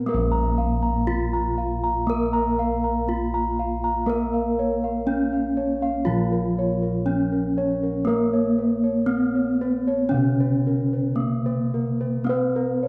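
Javanese gamelan music at a slow 59 BPM in 4/4, its beats falling unevenly, with a shimmering, hypnotic mood across this short section cut from a longer piece. Two bronze metallophones struck with wooden mallets play throughout, one carrying the melody between Bb3 and Bb4 and the other supplying accompaniment lower down, both ringing with the shimmering beats of paired tuning. The melody metallophone sounds close, dry, full and up front, while the accompanying one shares that close, dry fullness. Two sets of bossed gongs sound for the whole 12.9 seconds: one spins arpeggios in a higher register with a round, airy, up-front tone, and the other anchors the bass from as low as Bb1, its bronze sound round and beating. A moderate recital hall reverb, like that of a church or concert hall, surrounds the ensemble.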